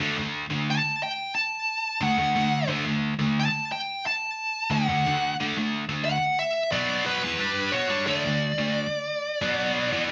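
A scooped, high-gain electric guitar opens this heavy, dark metal fragment, its bright, double-tracked riff picked up front through thick distortion at a steady 89 BPM in straight 4/4. At 0.7 seconds a high-gain lead guitar joins, carrying the melody above the riff with a distorted, picked tone that sits warmer than the riff beneath it. Both guitars stand forward in the mix, the lead ringing between B4 and A5 while the riff covers B2 to G4. The pair sound like a band playing live together in one stone room, with moderate reverb lending a hard-surfaced ambience. A D5 chord anchors the opening, and the whole passage, cut from a longer piece, runs about 10.1 seconds as a single section.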